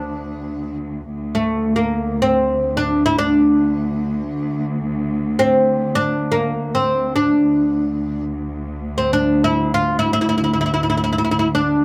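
A fretless oud, bright and woody with its double strings plucked by plectrum, carries a melancholic, soulful melody up front over a dark, veiled drone from a muted cello section bowed with vibrato and soft attacks, the Turkish makam ensemble captured live in one room with light reverb in this 11.8-second excerpt from a longer piece.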